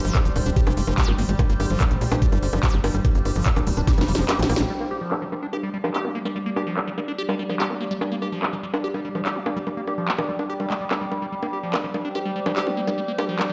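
A psychedelic trance excerpt at 145 BPM opens on a drop, with a knocking electronic kick up front, a tight, punchy sawtooth sequencer bass with ring modulation, and an overdriven techno kit of cracking snare, smooth hi-hats, handclaps, bongos and crash cymbal. Meanwhile, a squelchy, resonant acid bass riff runs through phaser and dub echo, while a sweeping drone of moving overtones and a warbly, nostalgic tape-like pad sit in the background, both pumped by the sidechain. The mood is alien and trippy, set on a G5 chord, in a tuning a touch below standard. A drum fill arrives at 3.9 seconds, the kick drops out at 4.3 seconds, and a band accent lands just before the sequencer bass stops at 4.7 seconds. From there the drums carry on under a filter sweep alongside the acid riff, drone and lo-fi, detuned pad, all in a large studio reverb that suggests a big sound system in a bare room.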